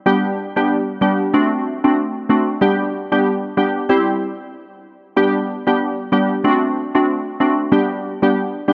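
A glassy, crystalline wavetable pluck opens at 0.1 s and carries this short, joyful afrobeats cut alone until 8.7 s, its bright, detuned tone thickened by chorus and shaped by a filter sweep and ring modulation. The breezy, swung groove moves through a simple G, D7, C progression, with the pluck sitting up front in a light reverb. The whole recording has a worn, vintage cassette character, with a warbling pitch drift.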